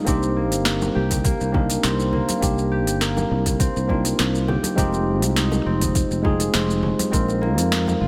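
Smooth and relaxed, this sunset chillout piece rests on a growly, punchy fretless electric bass sitting up front, with a clean tine electric piano and a warm, fingerpicked concert harp ringing out arpeggios, both carrying tape echo. The drums pair a soft, overdriven electronic kick with a produced R&B kit that brings a sharp snare, crisp hi-hats, shaker and the same gritty drive. Very quiet bongos and congas, played with soft hands in a small room, add to the lightly swung groove as the chords move from Cm7 to Fm7 at 4.8 seconds and Bb9sus4 at 7.1 seconds, within a light digital ambience.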